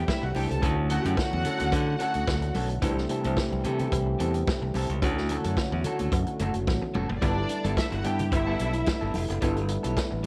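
Joyful and danceable, this straight 4/4 disco passage at 109 BPM rides a punchy vintage drum kit and a bright, up-front fingered electric bass. A slightly broken-up picked electric guitar, a worn, faintly out-of-tune tine electric piano and congas add to the groove, along with a metallic cowbell and a mellow French horn section holding sustained chords in the background. A dark, woody string section appears briefly at the start and returns at 7.2 seconds, after a drum fill, when the harmony moves from alternating C6 and Dmaj7 to G69, all set in light reverb.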